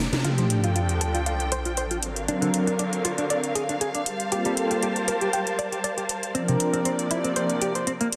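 A nu-disco groove at 118 BPM in 4/4 with a light 16th-note swing, this feel-good, groovy excerpt in F major opens on a drum fill and a band accent before settling in. The house drum kit sits up front with a cracking snare and metallic hi-hats, electronic and layered, its overdrive and large-room re-recording giving the beat grit. A sub drop hits from 0.2 to 2.3 seconds as the chords move from F69 through D7alt and Gm11 to C9sus4. A rich chamber string section holds bowed, vibrato-laden sustained chords, while a smooth, detuned sawtooth pad with a slow attack, chorus and tape echo fills in underneath until 7.5 seconds. A clean, direct-recorded electric guitar plays a picked, compressed riff through subtle chorus, a low-pass filter and tape echo. A lush hall reverb surrounds the mix, and the master is dense and heavily limited.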